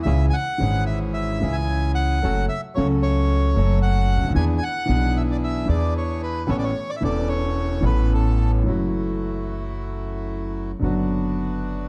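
A woody, thumpy pizzicato upright bass on gut strings, a boxy grand piano and soft bandoneon stabs open this elegant, nostalgic tango excerpt at a rubato 112 BPM in A major alongside a close-miked, reedy, dry bandoneon melody that sings until 8.5 seconds before the harmony turns to F# minor at 8.7 seconds, all set in light reverb with a dark production.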